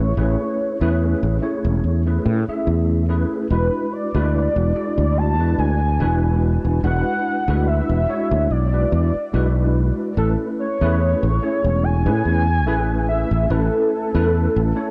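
Lightly swung sixteenths in 4/4 carry this faded, woozy vaporwave fragment, where a velvety, detuned synth lead with chorus, vibrato and tape echo sings the melody over a bright tine electric piano, roughened by 12-bit sampler grit, ensemble chorus and tape echo, as a growly, up-front fretless bass with tube saturation sustains beneath, all moving from Amaj9 to E9 and back within a dark cassette-toned mix touched by light digital reverb.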